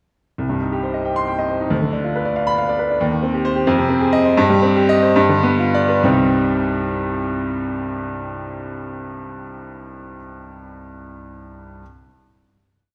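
A clear, open grand piano with long sustain sweeps through stormy, agitated arpeggios from C2 to C6 in this complete classical virtuoso study, its rubato 6/8 pulse slowing from 2.4 seconds before a final chord arrives at 6.0 seconds and rings through a reverberant recital hall heard from further back in the room.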